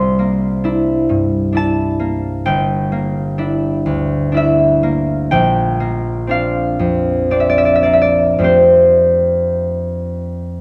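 A moderate recital-hall reverb surrounds a solo concert harp that sits up front, its acoustic, fingerpicked strings ringing from G1 up to C6. This wistful, gentle classical fragment, cut from a longer piece, moves in a rubato 3/4 at 49-66 BPM in G dorian, with the harp tuned to A4 = 438 Hz. Over about 10.6 seconds its warm harmonies pass from C9 through Gm6 and Bbadd9 to Fadd9 at 8.4 seconds.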